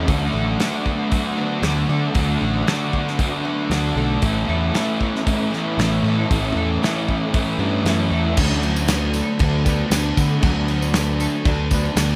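Dreamy, wistful shoegaze and dream-pop rock, cut from a longer piece, drifts between D6 and Aadd9 over a loose indie drum kit with dark cymbals and a tight kick, anchored by a growly fuzz bass up front. An overdriven semi-hollow guitar carries the forward riff through reverse reverb until 8.4 s, while a compressed fuzz guitar riff with chorus and a shimmering, octave-doubled twelve-string acoustic playing arpeggios through chorus and delay sit further back. At 8.4 s a jingly tambourine joins in the background, all in a modest booth ambience.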